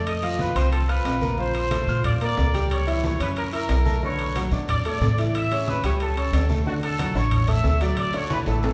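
Salsa in a festive, sunny mood, this short cut from a longer piece sets a mellow, tight trumpet section carrying the melody over a clear concert grand piano, a woody, growly pizzicato upright bass, distant low-tuned congas in the background, a raspy guiro and ringing metal-shell timbales, all bathed in a wet recital-hall reverb, with a drum fill closing it out at 8.3 seconds.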